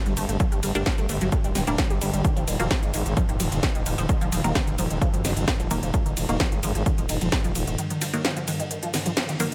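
Driving peak-time techno at 130 BPM in a straight 4/4, hypnotic in mood, this excerpt moves from G minor to E-flat minor over a swarming, nasal drone sitting in the background with its own reverb, while a juicy, squelchy resonant pluck riff runs through phaser, tube saturation, chorus and digital delay. A growling FM bass holds thick, sustained low notes until 7.8 s, and a punchy electronic kick pounds from 0.4 s to 7.4 s under an up-front kit of cracking snare, smooth hi-hats, ride cymbal and shaker. From 0.8 s, muted dub chord stabs with phaser and delay drift behind, with sidechain pumping on the drone, pluck, bass, stabs and kit, light reverb over the mix, and a band accent landing at 9.2 s.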